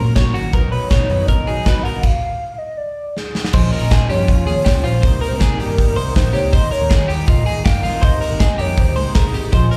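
A big, up-front rock drum kit with bright cymbals and a punchy kick drives this youthful, nostalgic slice of jangly indie pop, cut from a longer piece and heard as a live gig through a club PA with a light reverb around it. A dark, round, foam-muted electric bass anchors the low end, while a clean, compressed twelve-string electric guitar spins arpeggios through plate reverb and slapback echo over a full-bodied fingerpicked dreadnought acoustic tucked into the background. From 0.5 seconds a warbling, detuned synth lead carries the melody with chorus and vibrato, its mellow tone floating above reedy accordion chords that sit low in the mix with a sweet, light tremolo tuning. The band breaks off into a stop at 2.0 seconds before a drum fill launches the second section at 3.5 seconds, where a very quiet, jingly tambourine joins in. The harmony moves from a bright opening through minor and suspended chords, settling on an Abadd9 near the end.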